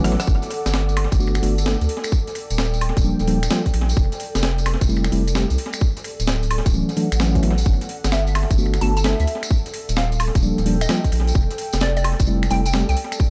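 A light reverb and digital ambience wash over this echo-heavy mix, an excerpt of soulful, sunny UK garage with a swung two-step feel. An up-front electronic kick drum, tight and layered as if re-recorded in a large room, anchors the groove alongside a gritty, pitched-up breakbeat kit of finger snaps, hi-hat, rim click, snare and woodblock treated with analog delay, while a jingly acoustic tambourine sits close in the mix. A deep, saturated sine sub bass holds the low end with thick, sustained notes, and a mellow tine electric piano plays clean stabs through a low-pass filter and tape echo over lush major-ninth chords moving from Gmaj9 to Ebmaj9, Fmaj9 and Dmaj9. Behind them, a warbling, nostalgic pad of detuned sawtooth and triangle tones breathes with chorus and sidechain pumping. At 8.1 seconds a hollow, bouncy square-wave pluck enters with detuned, vintage 12-bit sampler grit and analog delay, adding a top-line melody.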